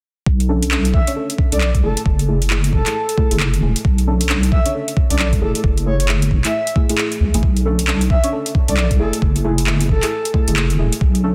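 A dense, heavily limited modern mix with light digital ambience frames this bouncy, moody two-step UK garage excerpt, swung on the sixteenths and cycling between Bm7 and F#m7. An overdriven, knocking electronic kick and a garage kit of handclaps and metallic hats drive the groove beneath a deep, wobbling bass that sits up front, coloured by chorus and tube saturation. Dark, mellow chord stabs treated with chorus, phaser and dub echo fill the middle, while a breathy, flute-like synth lead with vibrato, lush chorus and dub echo enters at 0.9 s and stops at 10.5 s.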